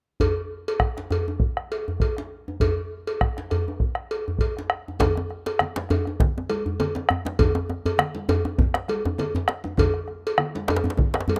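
West African traditional drum ensemble excerpt at 100 BPM in 4/4 with a lightly swung sixteenth feel, earthy and festive, where a deep, dark bombo, a metallic cowbell and a compressed, saturated djembe played with soft hands sit up front from 0.2 seconds, joined at 5.0 seconds by bright, high-tuned congas with a thin-skinned, band-limited vintage tone and a second close, dry djembe, all in a rough home-demo mix with studio ambience.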